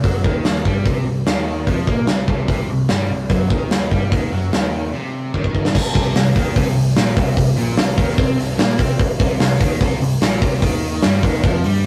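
From the opening second, an up-front big-room rock kit with a punchy kick and rolled-off top drives this menacing hard rock excerpt in C minor at 147 BPM, while a crunchy, bright overdriven guitar and an overdriven hollow-body guitar play the riff in the background over a picked, amped electric bass, with a drum fill at 5.3 seconds leading into the second section, all captured as a rough rehearsal-room recording with light reverb and saturation.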